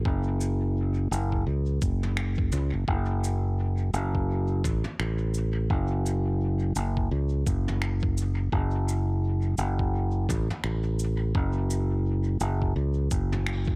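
A growly, up-front fingered electric bass anchors this hazy, meditative ambient dub excerpt in F# minor at 85 BPM with a 16th-note swing, joined by a muffled, pitched-down electronic kick from 0.1 seconds and a distant, roomy brush kit with cabasa, finger snaps and toms soaked in dub echo from 0.4 seconds, before the band hits an accent at 13.5 seconds.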